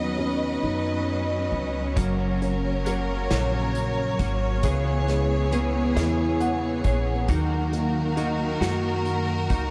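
A tender, heartfelt pop ballad excerpt in a slow six-eight at 45 BPM in B major opens with a mellow felt-muted upright piano under a subtle chorus, lush bowed strings and a woody, thumpy pizzicato upright bass, joined at 2.0 seconds by clean, scooped electric guitar arpeggios through analog chorus and delay and an acoustic drum kit with a punchy kick, played with bundle sticks, with a soft piano fill at 6.0 seconds, all set in a dreamy plate-reverb haze.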